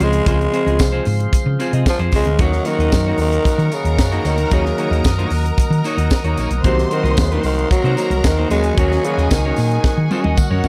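Disco with a sultry, driving feel, cut from a longer piece, where a raspy, growling tenor saxophone carries the melody up front over a punchy, round hollow-body bass and a tight funk kit with a high-tuned snare that closes on a drum fill at 9.8 seconds. A clean, picked electric guitar adds accompaniment, a mellow reed electric piano with fast tremolo and a tonewheel organ on slow rotary speaker fill in the background, and a distant, jingly tambourine joins at 0.3 seconds. A lush, bowed studio string section enters at 2.4 seconds as a second line over chords moving from Dbmaj7 through Ebm7 and Cm7b5, all within a dark production with light reverb.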